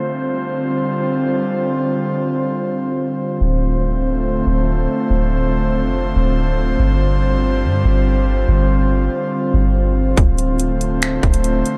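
An airy, breathy pad opens this ethereal, melancholic cloud-rap excerpt, its detuned, chorused chords alternating between G7sus4 and Dm7 under a filter sweep, low-pass filtering and sidechain pumping. At 3.4 seconds a soft, round 808-style bass arrives deep and up front, and a trap kit of finger snaps, metallic hi-hats and a hard-clipped kick joins at 10.2 seconds in a half-time feel. The production is dark and dry, with audible lossy compression artefacts.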